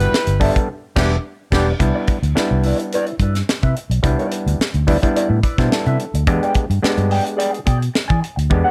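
Dry and close, this funky, hypnotic funk cut from a longer piece opens with a smooth, lightly vibrato-touched horn section that joins the band in an accent from 0.7 seconds, before the horns drop out at 1.7 seconds. Up front, a round, punchy, foam-muted fingered bass and a tight acoustic kit with a high-tuned snare anchor the groove, while a dark, clean electric guitar through wah supplies accompaniment. A stringy, overdriven clav through a combo amp punctuates with stabs and takes a fill at 5.2 seconds as the harmony moves from Em7 to Cmaj9 and on to E7#9, and a drum fill closes the passage.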